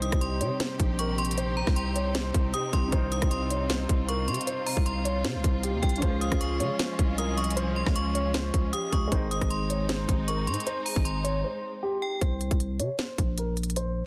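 A dense, heavily limited modern master with a small-room ambience frames this dark, hard-hitting trap excerpt in a half-time feel, cut from a longer piece. Up front, an electronic trap kit pairs a hard-clipped kick and a sharp, soft-clipped snare with crisp hats and rim clicks, while a growling, buzzy 808-style bass with a fast attack decays beneath it. A boxy concert grand carries the melody through a low-pass filter and tape echo, and a second, mellow piano sits in the background playing accompaniment. Above them, a metallic, inharmonic FM bell rings out a bright second line with chorus and a long release, and a lush symphonic string section holds bowed chords with vibrato and portamento over a Cm, Db and Ab progression. A very quiet vintage brass ensemble adds brief low stabs, the last at 9.1 seconds, before a break at 11.4 seconds. From 12.2 seconds the strings, bell and accompanying piano drop away, leaving the lead piano, bass and drums to close the passage.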